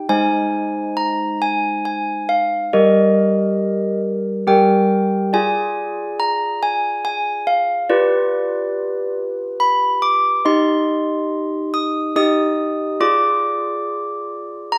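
A recital hall's wet reverb, with a 1.4-second decay, surrounds this short classical passage for handbells, cut from a longer piece. The solo handbells sit up front with a clear, ringing, bell-like tone and a boxy, small-room colour, spanning G3 to Eb6 in a steady triple metre. Chords move from Ab through Eb/G, Ddim/F and G7/F to Cm/Eb, giving the music a wintry, solemn mood.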